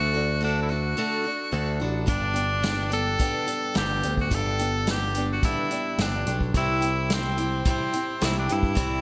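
This bright, 1980s-style digital production sits in a moderate plate reverb, giving a short folk rock and heartland rock excerpt a hopeful, warm glow at 108 BPM in a straight 4/4. An edgy tenor saxophone carries the melody up front, forceful and punchy in a pop style with vibrato, ranging from C4 to A4. Beneath it, a boxy parlour steel-string acoustic guitar is picked, with audible finger squeak, while a growly picked electric bass, direct and amped, holds the low end from G1 to G2. A vintage drum kit enters at 2.1 seconds with a natural studio-room sound, a punchy kick, a medium-tuned snare and hi-hat, its top end rolled off. The harmony moves from D to G at that same point and on to C at 6.5 seconds.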